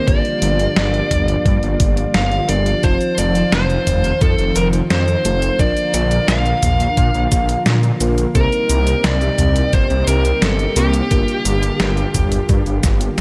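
Synthwave with a cinematic, moody air, this short cut from a longer piece sets a dark, overdriven lead guitar up front carrying the melody through delay, over a thick detuned saw bass with tube saturation and a thumpy, tape-toned electronic kick. Behind them, a lush, warbling unison pad holds sustained chords with chorus and sidechain pumping, while a dreamy FM electric piano with a soft pad layer adds mellow stabs. A detuned 8-bit drum machine supplies cabasa, hi-hat, a medium-tuned snare and toms in gated reverb, as the chords move from Gm7 through F7, Bb and Cm7 before returning to Gm7.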